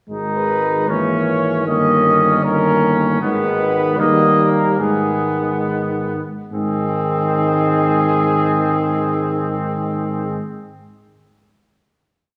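Classical brass quintet music, solemn and grave, unfolds as a short complete piece in a rubato 6/8. From 0.4 seconds a mellow, distant trumpet carries the melody with light vibrato, over a clear second trumpet, a smooth-topped French horn set in the background and a soft-attacked euphonium, which sound sustained chords in the rhythm of the tune, while a vintage-toned tuba sustains the bass with passing notes. The theme slows from 2.4 seconds into a held final chord at 6.5 seconds, all within a wet recital hall reverb.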